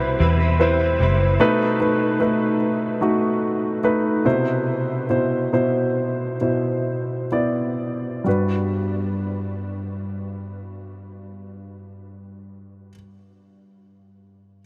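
A warm, up-front grand piano carries this tender, heartfelt pop excerpt, its short-sustained chords providing accompaniment throughout. At the very start, a clean, compressed electric guitar picks brief arpeggios colored by ensemble chorus and tape echo, while a dark, round, foam-muted fingered bass adds a punchy low line. Both the guitar and bass stop at 1.4 seconds, leaving the piano alone. From that point the tempo slows gradually until 8.3 seconds, where a new section begins. The harmony moves from Cmaj7 to B7, back to Cmaj7, and settles on Gmaj7. A huge ambient reverb soaks the whole mix, giving it a dreamy, lingering haze.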